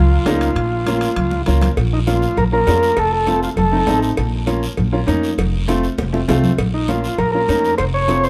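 Lightly reverberant and cut from a longer piece, this fiery, driving cumbia in Bb harmonic minor moves at 199 BPM in a straight 4/4, led by a reedy, overdriven vintage combo organ that carries the melody up front with light vibrato, drops out at 4.0 seconds and returns at 6.7. Beneath it sit a thumpy, gut-string pizzicato upright bass, a clear, woody upright piano with long sustain that accompanies over Bb minor and F chords, bright thin-skinned congas played with soft hands, ringing metal-shell timbales and cowbell in the background, a raspy, dry guiro, and brief drum fills.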